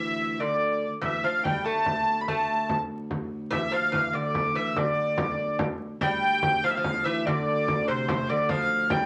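Ancient and driving, this medieval dance in a straight 6/8 is cut from a longer piece and moves in two sections, the second arriving at 6.0 seconds. A rich, nasal hurdy-gurdy carries the melody up front, its wheel-bowed tone smooth and boxy as it sits high in the upper register. Beneath it a bright, delicate lute plays a fingerpicked second line on gut double strings, some doubled at the octave, while a dark viola da gamba holds a low ringing drone with light vibrato and a floating, pure quality. A deep, large frame drum played with soft hands joins at 1.0 second, adding a live-room pulse under the strings. Moderate studio reverb surrounds the ensemble, and a layer of vinyl crackle lends the recording an aged surface.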